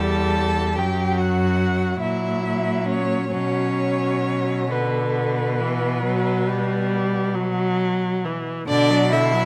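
A distant first violin carries the melody with expressive vibrato and gliding portamento, while a second violin sings a smooth, even line beneath it in this melancholic, solemn slow movement for string quartet, cut from a longer piece. Up front, a clear viola supplies the accompaniment and a focused cello anchors the bass, moving from E minor through F#7 to B minor in a rubato 12/8 feel. Close, detailed microphones and light reverb give the bowed strings an intimate, lush presence.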